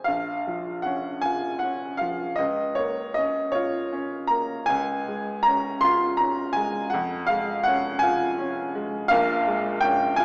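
In a rubato 12/8, this mournful and wistful romantic nocturne for solo upright piano drifts from a minor chord toward its relative major and settles back onto a minor seventh, in a brief fragment lifted from a longer piece. The piano sounds clear, woody and smooth, with a vintage character, and sits up front. It is bathed in a wet recital hall reverb and filtered through worn, warbling old cassette tape whose pitch drifts, giving the whole a small-speaker sound.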